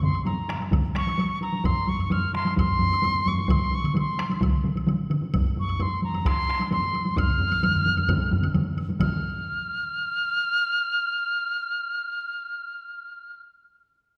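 A wet, spacious scoring-stage reverb surrounds this driving, powerful Japanese traditional cut for taiko ensemble, taken from a longer piece in a straight 4/4 feel. Several taiko groups pound with hard and heavy sticks, three from the start and a fourth joining at 0.7 s: one sounds vintage and band-limited, another distant in a large room, and two sit in tighter small rooms, while a close, dry woodblock clicks woodily in the background. Up front, a mellow piccolo with a pure, expressive vibrato, soft attack and rolled-off highs carries the melody throughout, continuing alone after the drums stop around 9.4 s until 13.4 s.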